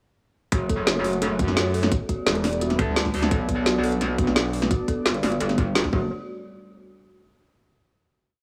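A dark, mechanical drum and bass piece opens straight into a drop at 0.5 s: a tight electronic kick and an up-front kit of woody snare and metallic hats drive a saturated, chorused wobble bass whose wobble speed shifts from phrase to phrase. From 1.4 s a thick, growling FM bass adds chopped phrases that answer the first bass. Behind them a mellow, detuned analog pad holds sustained chords and an eerie, inharmonic bell repeats a three-step loop drifting against the bar, both pumping with chorus and the bell trailing tape echo, before a final hit lands at 6.1 s in a light small-room ambience.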